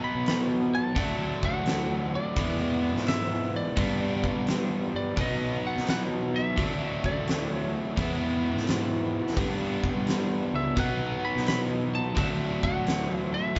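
Cut from a longer blues rock and southern rock power trio performance, this opens at once with a bright, double-tracked overdriven guitar riff sitting up front, alongside a lightly driven lead guitar carrying the melody through tape echo. The fuzz-laden picked bass arrives at 0.2 s, dark and round with its own overdrive, and the huge arena drum kit follows at 0.3 s with a punchy kick, fat snare and hi-hat in a big, pumping room. The mood is driving and swaggering, riding a swung eighth-note feel in 4/4 as the chords cycle through B, D, E and G. The lead guitar's tone is slightly broken-up and compressed, singing above the riff in a higher register. The band sounds as if playing live together in one room, with moderate studio reverb and a top end that stops short of the highest frequencies.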